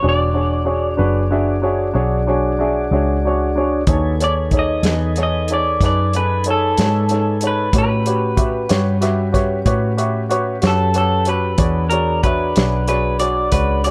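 A slightly broken-up, lo-fi electric guitar carries the melody over a baby grand piano, both trailing dub echo, while a soft, flute-like tonewheel organ holds sustained chords through a slow rotary speaker in the background and a round, foam-muted picked bass sits up front. At 3.9 s a dry, dark soul drum kit of hi-hat, tight kick and fat snare joins, also touched with dub echo, as the chords move from E13 to B13 and A13 and back to E13. This laid-back, swaggering slow blues in 12/8 has light reverb and an echo-heavy mix, and is cut from a longer piece.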